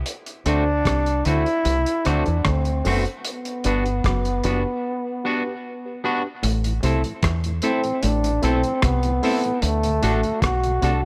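Set in a light reverb, this sunny roots reggae excerpt at 75 BPM in D mixolydian puts a breathy, whispered trombone melody with tape echo up front over a deep, round fingered dub bass, a cloth-damped, thuddy lo-fi drum kit of kick, hi-hat and rim click, a clean, bright semi-hollow electric guitar with tape echo, a muted, stringy clav riff and reedy electric piano stabs with overdrive and fast tremolo in the background, moving from D7 and Gmaj7 through a break at 4.8 seconds to Am and D as a very quiet, mellow tonewheel organ enters at 6.7 seconds.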